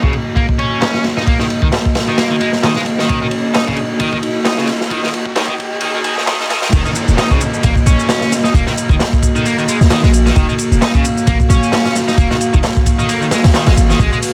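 Funky, gritty breakbeat, cut from a longer piece, where a saturated, crunchy breakbeat kit with dark cymbals and a tight kick, a bright, overdriven double-tracked electric guitar riff and a moody, detuned analog pad with sampler grit and sidechain pumping ride a filter-swept build-up, layered with house handclaps, bright hats and shaker from 0.8 s and a very quiet riser and downlifter, until the drop at 6.7 s brings in a deep, boomy 808-style sine bass up front.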